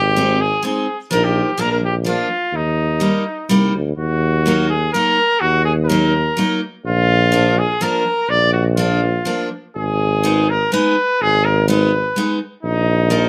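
A clear trumpet and a mellow tuba open this jolly, bouncy alpine folk excerpt together, with a vivid, picked steel-string acoustic guitar joining at 0.2 s. The dance moves in three with a loose, rubato feel. The trumpet carries the melody in a classical style with light vibrato, sounding up front yet also distant and roomy. Beneath it, the tuba holds down the bass with its own light vibrato and classical poise, while the guitar's fresh strings ring out with an auditorium-like presence. At 4.0 s the harmony darkens into a minor mode, moving through Ebm, Bb and Abm before settling on a Bbsus4 near the close. The outdoor recording carries little reverb, and the three parts play through to the end at 13.3 s.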